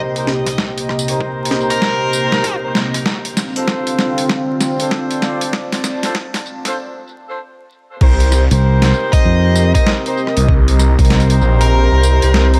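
Glitch hop at 97 BPM in C dorian with a swung 16th feel, playful and swaggering, this section of a longer piece builds for eight seconds over a moody, detuned analog pad, a warbling lo-fi tape-like pad and tight, vibrato-laden horn stabs under a filter sweep, while a gritty, pitched-down sampler drum kit with medium-tuned snare, hi-hat, rim click, tambourine and crash runs a fill into a short break, joined by a thumpy electronic kick and brief phrases from a dark, overdriven lead guitar with a parked wah and tape echo. At 8.0 seconds the drop lands on Cm7 with a swirling, saturated, phased saw bass up front, soon joined by a direct fingered electric bass, as the nasal wah guitar returns. The echo-heavy mix carries vinyl crackle and light reverb, and sidechain pumping breathes through both pads and the horns.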